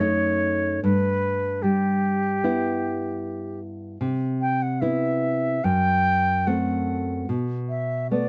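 Romantic chamber music for flute and classical guitar, this lyrical, tender fragment unfolds in a gently rubato 4/4. The concert flute sings the melody between G4 and G5 with a pure, straight, tongued tone, while the nylon-string guitar supplies thumb-plucked accompaniment from F#2 to E4, both parts sitting up front for the full 8.3 seconds. Close, detailed microphones and little reverb capture the intimate harmony as it moves from D#dim/F# through Em/G, Cmaj7 and F#dim to a B7(no3) at 7.3 seconds.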